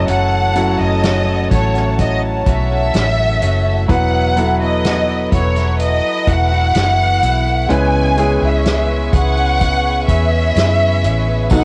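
A lush symphonic violin section carries the melody up front in this heartfelt, emotional pop ballad, its bowed ensemble tone shaped by vibrato and portamento. Underneath at a slow 63 BPM in 4/4, a clear, intimate grand piano plays the accompaniment with audible action noise, while a studio string section holds sustained chords with a soft, floating sul tasto quality. A direct-recorded clean electric guitar picks compressed, scooped arpeggios in the background, and a dark, foam-muted fingered electric bass sits round and up front. A soft-mallet drum kit with a punchy kick and medium-tuned snare sounds distant and roomy, joining at 0.1 seconds. The harmony moves from F#m7 to Esus2 to C#m7, and in the final moment, at 11.5 seconds, a French horn section with light vibrato and a jingly tambourine appear just as this cut from a longer piece ends. Every part except the bass and tambourine carries the soft, homespun character of a cassette recording.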